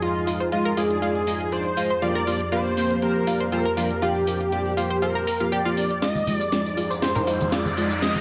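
Emotional and driving, this progressive house passage, cut from a longer piece, moves in a straight feel under a moderate, lush hall reverb. A thick, bold unison lead carries the melody from the start, its detuned sawtooth tone bright with vibrato and set among subtle chorus and digital delay echoes, while a breathy, airy pad holds soft, nasal sustained chords beneath. A glossy, retro polysynth punches out chorused stabs with a full-bodied pulse-wave character, and a round analog pluck spins arpeggios from 0.3 seconds, its fast attack and short decay adding sparkle. The house drum kit drives things with a cracking snare, metallic hi-hats and tambourine, its layered sound carrying a tape-warm sheen. At 6.0 seconds a build-up begins: a drum fill rolls in, the polysynth's filter sweeps, and a soft, pure FM bell line glimmers in the background through phaser and delay. Saturated congas struck with hard hands join at 6.2 seconds, and an electronic riser enters at 6.7 seconds as the harmony rests back on Fm7.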